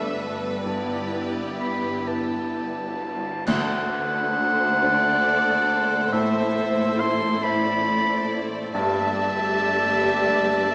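A cinematic, emotional film score excerpt in a slow, rubato 6/8 at around 42-46 BPM, moving and uplifting, cut from a longer piece and heard through a reverberant scoring-stage space with a small-speaker sound. Lush bowed strings carry it: a distant violin section with soft-attack portamento sings the melody against a clear, smooth second violin line, while focused violas, rich cellos and woody, dark double basses fill the background alongside an intimate grand piano whose action noise is audible. A very quiet, mellow horn section holds chords only until 3.1 s, dark cymbals and concert bass drum add a swell and an accent around 3.5 s, and from 1.6 s a present, up-front oboe stands out above everything else over chords moving from Gadd9 through D7 and Am back to Gadd9.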